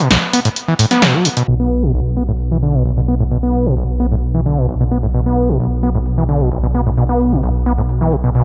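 Relentless and driving, this peak-time techno cut is taken from a longer piece and pushes forward in a straight 4/4 metre. An overdriven acid bass riff opens the track, squelchy and resonant, its gritty, distorted plucks decaying and trailing a delay. A punchy analog drum machine joins almost at once with hi-hat and a punchy snare that sounds as though it was re-recorded in a small room. After a short opening break, a thick, menacing detuned saw bass arrives at 1.5 seconds, holding a sustained, beating low note with a saturated edge. From that point a filter sweep works through the acid riff while all three parts sit up front in a dry, close mix shaped by a low-pass filter.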